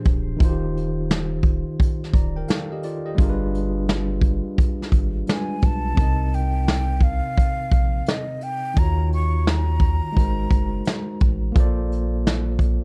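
A dark, dry production with little reverb frames this cosy, dreamy lo-fi hip hop fragment, cut from a longer piece and set to a swung 4/4 groove. Brushes on a vintage kit sit up front with a punchy kick and a rolled-off top, while a deep sine-and-triangle sub bass with octave and a bell-like, barky tine electric piano carry chords such as G7b9, Cm7 and Ab9. A breathy, close-miked silver concert flute with tape echo sounds at 0.0 s, then returns for an unsteady, tongued melody from 5.3 to 11.2 s.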